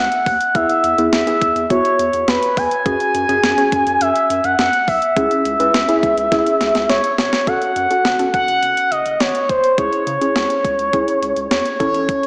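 Driving yet melancholic, this synth-pop excerpt sets an expressive, up-front synth lead with chorus and tape echo over a deep analog bass, a soft chorused pluck accompaniment entering at 0.6 seconds, and a thumpy, overdriven 12-bit drum machine. A drum fill from 6.3 to 7.5 seconds leads into a second section that moves between minor chords. The mix is dreamy and soaked in lush hall reverb, with a small-speaker sound.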